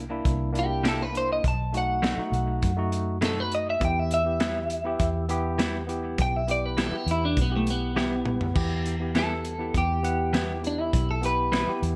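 Brooding and soulful, this straight-eighth soul blues excerpt moves from C7 to B7 and settles on E minor. A tine electric piano, played clean through its built-in speakers with plate reverb, sits under a round, foam-muted bass and a gritty, saturated breakbeat kit with a punchy kick and rolled-off top, while a slightly broken-up guitar through a small old amp carries the melody up front with analog chorus. A direct-recorded clean guitar adds stabs and a solo colored by spring reverb and analog delay, and a drum fill from 8.0 s ushers in the next section at 8.6 s.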